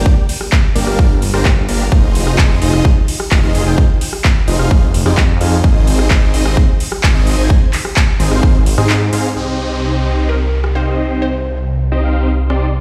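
Powerful and anthemic, this festival progressive house excerpt in C minor drives at 129 BPM in a straight 4/4, opening on a drop where a huge, euphoric supersaw lead riff, pumping under sidechain with a low-pass filter and tape echo, rides over a thick, menacing detuned saw bass with tube saturation, a punchy, tape-warm electronic kick up front, and an overdriven pop kit of handclaps, metallic hi-hats and rim clicks. The kick stops at 8.5 seconds, just before a short break, and at 9.4 seconds the chords settle on C minor as a downlifter sweeps down. A crystalline wavetable pluck with chorus and tape echo enters at 10.3 seconds, all of it heard through a big sound system in a bare stone room.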